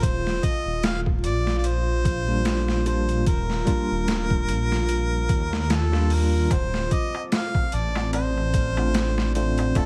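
Vinyl crackle hangs over this smoky, hypnotic trip hop excerpt, where a gritty, pitched-down boom bap kit with a thumpy kick, high-tuned snare and overdrive swings beneath a rumbling, detuned saw bass sitting up front and a moody pad with chorus and reverb in the background. A clear harmonica with light vibrato carries the melody through tape echo, and a bell-like tine electric piano joins at 2.3 seconds with tremolo, 12-bit sampler grit and echo of its own. When the harmony moves from Ebmaj9 to Dm7 at 6.5 seconds, a delicate celesta adds delayed arpeggios and a crisp metal-shell darbuka, struck with hard hands, sits in the background behind it.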